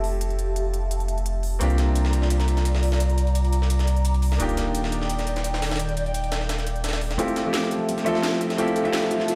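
Lush and uplifting, this short liquid drum and bass excerpt sets a bright, brilliant grand piano with gritty sampler echo over an airy, breathy pad and a deep, saturated sub bass up front, while a crisp, cracking electronic kit is joined at 1.6 seconds by a compressed breakbeat kit with a high-tuned snare, and a woody kalimba arrives for the build-up at 7.2 seconds as the chords return to Fmaj9, followed by a very quiet riser at 8.4 seconds.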